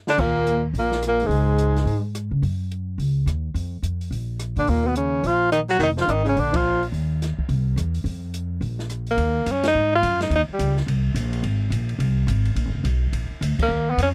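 Moody and cool, this short cut from a longer small-group swing and bop piece moves at a brisk 213 BPM in Eb minor, with a light swing on the eighth notes. A breathy, punchy tenor saxophone carries the melody in short phrases, its scooped notes, vibrato and smooth top sitting up front, while a baritone saxophone plays a second line beneath it in the first two phrases before dropping out after 6.8 seconds. Pizzicato upright bass with steel strings sounds woody, bright and growly, standing forward in the mix for the whole passage. The open drum kit stays further back, its dark cymbals, medium-tuned snare, rim clicks and boomy kick heard in an airy, polished small room. Band accents land at 6.5, 9.6 and 13.6 seconds, the last marking the tenor's final brief phrase as the harmony moves through Ebmadd9, Eb6, Abadd9 and Bb7b9. The sound is dry and close, in the manner of a 1970s studio session, with little reverb.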